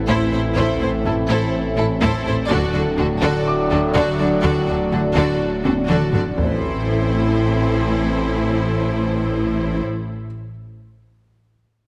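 This brooding, futuristic film-score passage opens on a bed of very quiet trombones and dark French horns holding sustained chords, together with a deep, moody analog pad coloured with chorus and phaser and a rumbling, detuned saw bass that beats underneath. At 124 BPM in a straight 4/4 and A dorian, the harmony moves from Am to D and back to Am as a lush, vibrato-rich string body settles in. Smooth violins carry the melody over a softer second violin line, expressive violas with portamento, focused cellos and close double basses. A very quiet, worn grand piano adds high texture while a mellow, harp-like synth pluck rings out arpeggios, both falling away around 6.4 seconds. Distant taiko drums struck with hard sticks play in the background, with a fill from 5.6 to 6.4 seconds before they drop out at 7.3 seconds. The whole is set in a moderate scoring-stage reverb and squeezed by heavy, radio-style compression, and it is cut from a longer piece.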